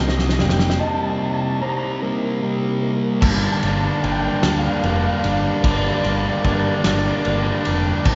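A slow 6/8 sway drives this cathartic, melancholic post-rock passage, cut from a longer piece. A loose indie drum kit opens on a fill, with a fat snare and dark cymbals up front beside a thick fuzz guitar riff and an overdriven picked bass, while a raw, lo-fi garage guitar with phaser carries the melody. Over Cm7, a twangy clean electric guitar and a felt-muted upright piano with audible action noise play background arpeggios until 3.2 seconds, when the chord turns to Gm7 and a biting, bright overdriven guitar adds a second riff; a deep, detuned ambient pad hovers very quietly beneath, and a cavernous church reverb with a dull top surrounds the whole recording.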